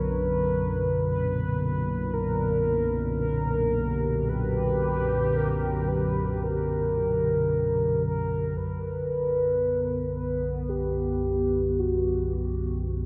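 A huge, wet reverb with a 7.6-second tail surrounds this dark, unsettling ambient drone, a slow 56 BPM passage in B harmonic minor cut from a longer piece. An up-front analog drone, vintage and warbling with pulse-width modulation, holds the low register while a detuned, resonant pad with filter swells sustains chords through the full 13.1 seconds, both treated with chorus. Above them a round, full-bodied horn-like synth lead carries the melody with vibrato, subtle chorus and tape echo until 12.6 seconds, as the harmony moves from Gm to Bm at 8.6 seconds.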